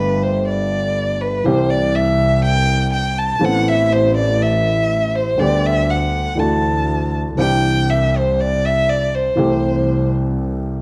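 Passionate and dramatic, this short tango excerpt in G major moves at 121 BPM in 4/4 with a rubato feel, drawn from a longer piece. A bowed violin sits up front, its playing expressive with vibrato, soft attacks and portamento, ranging from B4 to A5 before it stops at 10.1 seconds. A natural-sounding baby grand piano carries the accompaniment, while a single bowed double bass holds the low end with a nasal, reedy, gut-string tone and an airy bow, captured close in a period style. The harmony passes through Gadd9, C, Amadd9, G/D, Dadd9 and Cadd9 before settling on Am7/C. A moderate large-studio reverb gives the trio a sense of space.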